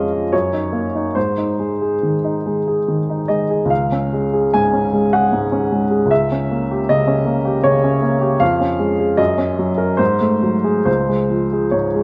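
A woody, intimate upright piano plays alone and up front, its action noise audible and its notes carrying a long sustain in a reverberant recital hall. This romantic character piece in 3/4 moves with a free rubato and a passionate, hopeful mood. A diminished chord shades the harmony at 6.1 s before the passage comes home at 10.9 s, in a short excerpt cut from a longer work.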